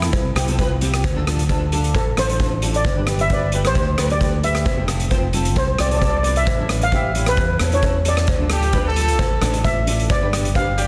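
Calypso at 132 BPM in a carefree, sunny 4/4, this fragment of a longer piece features a shimmering, mellow steel pan played with soft rubber sticks and touched by digital delay, carrying the lead over a dark, double-tracked fingerpicked classical nylon-string guitar, a bright, direct fingered electric bass, a polished street-band drum kit with a boomy kick, hi-hat and rim click up front in an airy big room, and a metallic cowbell in the background, while a close-miked jazz-style horn section joins with a second line at 8.5 seconds over changes moving from Fmaj7 through Dm7, G, F and A7 to Dm and G, all in a dense, heavily limited modern master with light studio reverb.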